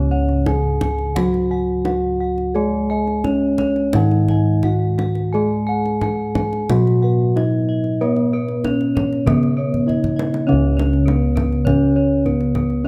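Shimmering and ceremonial, this slice of a longer Javanese gamelan piece in Db slendro moves at 86 to 102 BPM in a straight 4/4. A bronze metallophone struck with padded mallets carries a mellow, dark melody over a second metallophone's ringing wooden-mallet accompaniment. Bossed gongs sit up front with round, beating arpeggios, joined by a bright, airy horn-mallet metallophone, while soft padded gongs hold the bass in the background. A deep kendang enters at 0.3 seconds and plays a fill from 9.7 seconds that leads into a new section at 10.5 seconds, all captured with close, detailed microphones and light reverb.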